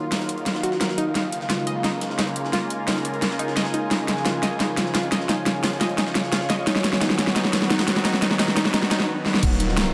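Futuristic and aggressive, this dark technical drum and bass build-up, cut from a longer piece, sets a sweeping, resonant pad of slow-attack chords against an ethereal triangle-and-saw pad with ensemble chorus and built-in reverb, both pumping under sidechain, while a round, wave-folded analog pluck arpeggiates with tape echo in the background. Up front, a dubstep kit drives drum fills with a huge snare and metallic hats, backed by a gritty, pitched-up jungle sampler kit and a very quiet, swirling phased saw bass. A faint riser enters at 7.7 s before an overdriven, knocking electronic kick lands at 9.4 s, all set in a lush hall reverb.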